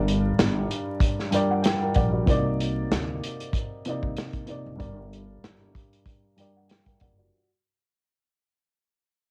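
Dry, crackling home-cassette sound frames this moody, gritty boom-bap hip-hop fragment at 95 BPM in G harmonic minor, where a dark, mellow, worn baby grand piano sits up front with tape grit, a low-pass filter and a filter sweep over Gm, Cm9 and back to Gm, a growly, woody pizzicato upright bass thumps underneath, and a punchy vintage kit with a rolled-off top and a medium-tuned snare swings lightly on 16ths as the whole fragment fades out gradually across its first 7.3 seconds.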